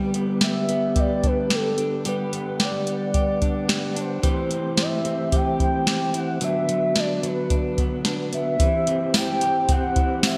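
A soft vintage rhythm box sets a straight 110 BPM pulse with a deep kick, crisp snare, metallic hats and tambourine under gated reverb, carrying this blissful, ethereal dream pop in G major as a mellow, flute-like tonewheel organ holds sustained chords with chorus vibrato and key click, a dark, slightly broken-up electric guitar picks fingered arpeggios through subtle chorus and delay, and a velvety sawtooth synth lead enters at 0.4 s with a sustained melody, all moving from G through Am7 and D69 to C at 8.6 s inside a lush hall reverb and bright 1980s-style digital production.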